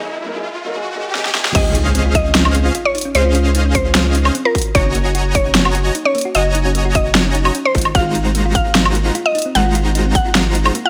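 A lush, bright future bass excerpt in Db major at 150 BPM with a half-time feel, carried by a light reverb, opening on a soft, felt-muted upright piano with audible action noise beneath an electronic riser and filter sweep, as a drum fill leads into the drop at 1.6 seconds with an impact. From there an overdriven big-room kit with a huge snare, crash, hi-hat and woodblock sits up front alongside a punchy electronic kick, while a deep, saturated sub bass and a dense, detuned supersaw riff pump against the sidechain. A woody, mallet-like FM pluck carries the melody with tape echo over tine-like thumb-piano arpeggios through a Dbmaj9, Gb69 and Ab13 progression.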